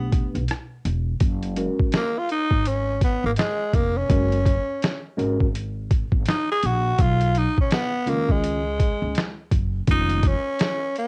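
A growling, breathy tenor saxophone takes a raspy jazz solo from 1.2 s over this smooth, warm jazz-hop excerpt at 83 BPM in F# major, backed by a worn, slightly out-of-tune tine electric piano and a woody pizzicato upright bass moving through F#add9, Badd9 and C#add9/E#, while an up-front, compressed, pitched-down boom bap drum kit with gritty sampler character, a thumpy kick, rim clicks, snare and swung hi-hat shares the piano's cassette-tape colour, all captured in a lightly reverberant home cassette recording.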